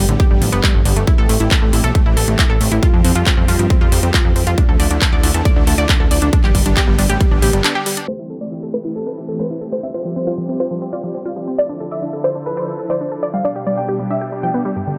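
A punchy, tape-warm electronic kick sits up front in this emotional, bittersweet slice of uplifting trance, cut from a longer piece, joined by a big-room dance kit whose metallic hats, handclaps and crash are softened by low-pass filtering and a small room ambience. Beneath them, a lush, detuned supersaw pad holds slow-attack chords with a phaser and sidechain pumping, while a filter sweep moves across it through the first 8.1 seconds over a progression cycling through G, Am7, Fsus2 and Dmadd9. A funky, evolving analog bass with a fast filter pluck and a background unison pluck playing wave-folded arpeggios with dub echo both pump with the sidechain. After a brief break and band accent at 7.6 seconds, the drums and bass drop out, and from 8.1 seconds a ring-modulated unison pluck carries the melody, shadowed by a catchy, sweeping unison lead and a brilliant but worn grand piano in the background, all touched by dub echo. 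A very quiet downlifter passes beneath this second half.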